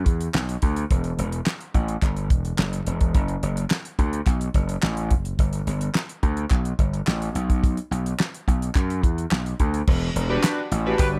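Studio ambience frames this slick, late-night early-eighties boogie funk excerpt at 107 BPM, where a gritty, overdriven slap bass and a damped 70s drum kit with a fat snare and tight kick drive the groove, crisp group handclaps sit in the background, a glossy chorused polysynth arrives at 10.3 seconds, and a dark, distant horn section with light vibrato touches in at 11.0 seconds.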